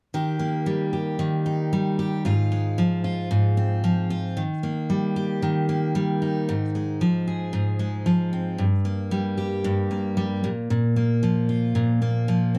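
A dark, warm production with light reverb frames this easy-going, carefree pop piece at 114 BPM in Eb major, where a bright, full-bodied picked steel-string dreadnought with fresh strings sits up front as the sole accompaniment, moving between Eb and Ab6 before shifting to Gm and Bb5 from 8.6 seconds.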